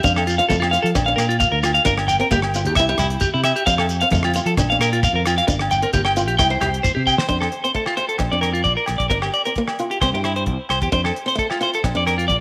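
Sunny and joyful, this highlife guitar band excerpt moves at 132 BPM in F major, with a twangy, slightly broken-up electric guitar up front spinning tape-echoed arpeggios over a boxy picked archtop acoustic, a round, punchy fingered bass and a damped 70s kit with a fat snare and tight kick. Ringing agogo bells and a grainy shekere sit in the background, while very quiet, thin-skinned congas drop out just before a drum fill at 7.1 seconds, with the shekere following shortly after. The whole band sits in a moderate echo-chamber reverb as the F, Bb, Gm, C progression keeps cycling.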